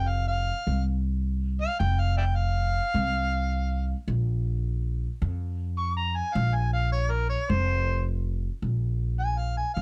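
A dark production with light reverb sets a close, intimate sound for this short fragment of acoustic country blues, cut from a longer piece. It moves at a laid-back 105 BPM in 4/4 with a swung eighth-note feel, and its mood is gritty and unhurried. An amplified, overdriven harmonica carries the melody and takes a jazz-style solo from 0.0 to 9.8 seconds, its tone rough and up front, colored by light vibrato, tongue slaps and scooped notes. Beneath it, an upright bass played pizzicato on steel strings sits equally forward, giving a woody, thumpy, warm low end across the same span. The harmony shifts between F5 and Bb5, returning to Bb5 at 8.6 seconds as the section begins again.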